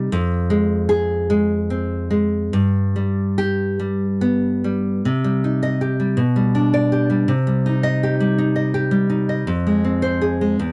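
Intimate and passionate, this brief romantic excerpt for solo nylon-string guitar unfolds in C minor at a slow, rubato 46-56 BPM in 6/8, its fingerpicked classical lines sitting warm and up front across a range from E2 to Eb5. The harmony moves from Fm to G before settling on Cm at 5.0 seconds, passing through G/B and back to Cm before turning to Fm at 9.5 seconds. The dry, close studio sound carries a 1970s character and a touch of light reverb, and the passage is cut from a longer piece.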